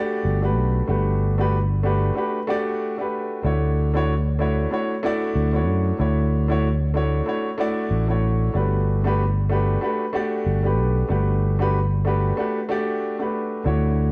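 Sunset chillout with a sunny, gently swung feel, cut from a longer piece, where an intimate grand piano with audible action noise and digital delay plays up-front accompaniment over Gmaj9 and Dmaj9 harmony while a growly, amped fretless electric bass with tube saturation sustains beneath it from 0.2 seconds, inside a dark, warm production with moderate scoring stage reverb.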